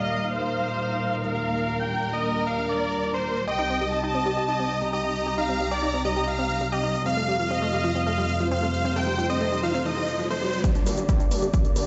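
Uplifting trance with a driving, bittersweet mood, cut from a longer piece, in a straight four-four pulse. A huge, euphoric supersaw lead carries the melody up front, its detuned sawtooth unison pumping against the sidechain and trailed by digital delay. A warm symphonic violin section floats a pure, soft-edged second line through tape echo, while a dark, woody studio string section sustains lush bowed chords with vibrato beneath it, moving through Eb, Cm and Fadd9 to Gm. Electronic shaker and hi-hat tick along overdriven in the background, and a round, nasal analog pluck adds chorused, delayed arpeggios from 3.5 seconds. A very quiet riser creeps in at 9.2 seconds, and at 10.6 seconds the build-up begins with filter sweeps on the lead and the arpeggio as a punchy, overdriven kick drum lands up front, soon followed by a gritty, aggressive sawtooth bass. The mix sits in a large studio reverb with a dull, rolled-off top end, as though played on a big sound system in a bare room.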